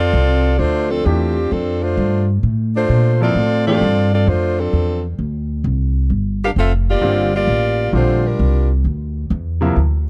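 Big band swing at 131 BPM with a dramatic, sultry mood: a tight, up-front saxophone section carries the melody over a woody, thumpy pizzicato upright bass, while a clear grand piano with audible action noise adds intimate accompaniment from 1.1 s, moving from Dm7 to Gm7 in a dry, close 1970s-style studio sound before the saxophones stop at 8.7 s in this brief excerpt from a longer piece.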